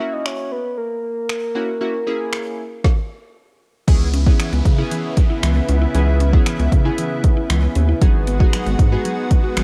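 A home-recorded cassette sound with a digital ambience gives this driving, confident dance-pop excerpt at 116 BPM in 4/4 a slightly worn, tape-tinted sheen. It opens on an F#7 chord, with a soft, mellow octave-layered synth lead carrying a brief chorused melody with vibrato over glossy, bright retro synth keys that pump with sidechain and use pulse-width modulation and a filter sweep. A deep house drum kit, placed up front, arrives at 0.3 seconds with a punchy kick, a woody snare, dark hats, finger snaps and a crash cymbal. At 3.9 seconds the harmony moves to C#m7, and a round analog bass with a fast attack and sustained tone joins, along with a lush, thick, detuned unison pad that swells in slowly under chorus and sidechain pumping. A percussive, FM-built mallet-like pluck plays arpeggios through analog delay in the background, while a faint downlifter sits underneath until the chords shift to G#m7 at 8.0 seconds.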